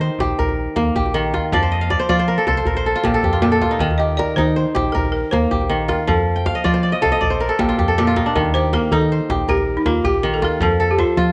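Crisp, ringing fingerpicked kora arpeggios sit up front over a snappy, metallic slap-like FM bass from the start, with a tight, cracking djembe in the background and a kora fill at 1.5 seconds, before a woody, buzzing balafon melody played with hard rubber mallets enters at 4.0 seconds and another kora fill follows at 6.4 seconds in this flowing, warm 12/8 West African string and xylophone piece, cut from a longer work and heard in a moderate echo-chamber reverb with small-room ambience.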